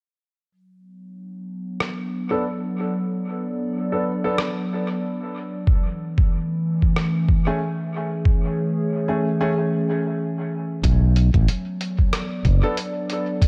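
Ambient dub with a deep, hazy mood, cut from a longer piece, where a warbling, nostalgic pad with chorus holds sustained chords from 1.0 s, a muffled, tape-soaked sampler-style kit of hi-hat and rim click with dub echo joins alongside woody upright piano stabs under a low-pass filter sweep, a thumpy, pitched-down electronic kick arrives at 5.7 s, and after a break a bright, punchy fingered electric bass steps up front at 10.8 s, all set in a moderate echo chamber reverb.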